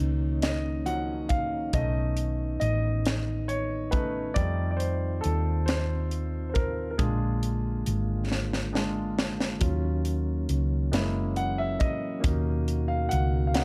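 A baby grand piano carries a solo across the whole of this short cut from a slow gospel piece, its natural tone and short sustain giving the passage a solemn, soulful voice. Beneath it, a mellow tonewheel organ holds soft, flute-like sustained chords through a slow rotary speaker with chorus vibrato and a touch of key click. A hollow-body short-scale electric bass, dark, round and punchy, sits up front as the loudest part of the mix. A crisp fusion drum kit with a high-tuned snare, punchy kick and hi-hat joins at 0.4 s in a straight 6/8, adding a fill between 8.3 and 9.6 s. The harmony moves through seventh chords such as Ebm7, B7 and Bb7 before settling on Bmaj7, all captured in a dry, dark and warm production.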